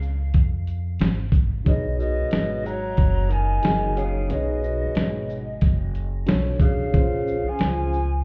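A gritty, compressed sampler-style drum kit with a thumpy kick and fat snare sits up front beside a woody, dark pizzicato upright bass in this smoky, cool jazz-hop excerpt, and near the end of the opening break the clean tine electric piano enters at 1.6 seconds, with a breathy, hollow jazz flute carrying the melody through tape echo and a distant subtone tenor saxophone with scooped notes adding a low second line, the mix sounding muffled as if heard through a wall into a club room.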